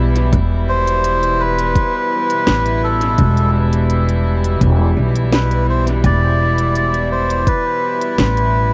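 A straight 4/4 groove at 84 BPM carries this hazy, deep ambient dub passage in E minor, cut from a longer piece and resting on a single Em chord. An organic electronic kit enters at 0.2 seconds with a woody snare and smooth, tape-softened hi-hats soaked in dub echo, and an overdriven electronic kick with a layered, small-room thump follows at 0.3 seconds. Up front, a growly pizzicato upright bass with steel strings holds the low end from E1 to B1. A distant chamber string section sustains soft-attack, floating bowed chords beneath, their pure tone coloured by cassette tape. From 0.7 seconds a reedy, breathy melodica takes the melody between A4 and D5, its nasal, mellow voice trailing dub echo. Light reverb and the character of a home cassette recording wrap the whole passage in a dusky glow.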